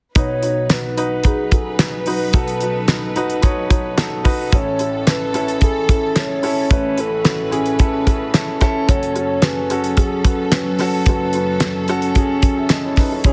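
A dark, woody upright piano sits up front in this earnest, bittersweet piano-driven pop excerpt at 110 BPM, its long sustain carrying the accompaniment as the harmony moves from B to A at 4.5 seconds and F#m at 8.9 seconds. A hollow, clarinet-like synth lead with chorus and vibrato sings the melody over lush bowed strings holding sustained chords, while a dry 70s drum kit with a fat snare and tight kick drives the beat, and very quiet, crisp group handclaps join from 0.7 seconds. A large studio reverb and heavy multiband compression give the whole a dense, radio-ready sheen.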